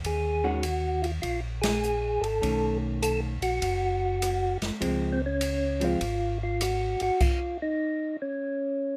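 A loping swung groove in four sets up this greasy, bluesy soul jazz organ trio fragment, with an airy small-room drum kit of dark cymbals, hi-hat, rim click, snare and a boomy kick, and the whole band hitting an accent at 1.5 seconds. Underneath, a mellow tonewheel organ carries the bass line through chorus vibrato and a slow rotary speaker, while a clean, picked hollow-body electric guitar comps over Ebm, Cb9 and Dbmaj7 until 6.0 seconds. Up front, a round, percussive tonewheel organ lead with third-harmonic percussion and slow rotary sings the melody in light reverb, carrying on alone after the drums stop at 7.4 seconds.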